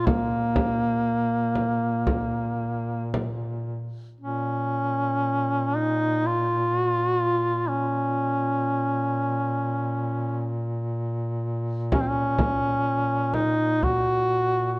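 A clear duduk sings a mournful, longing melody over a warm duduk drone from the very first moment, in the free, rubato manner of a Caucasian folk lament. The melody duduk sits up front with vibrato and scooped notes, while the drone beneath it carries a lighter vibrato, scooped notes of its own and a smooth top. A deep, large frame drum, played with soft hands and carrying a small-room character, joins almost at once and falls away at 3.4 seconds. The two duduks then carry on alone until the drum returns briefly at 11.9 seconds. Close, detailed microphones catch the reeds in fine detail within a moderate concert hall reverb, and the passage is cut from a longer piece.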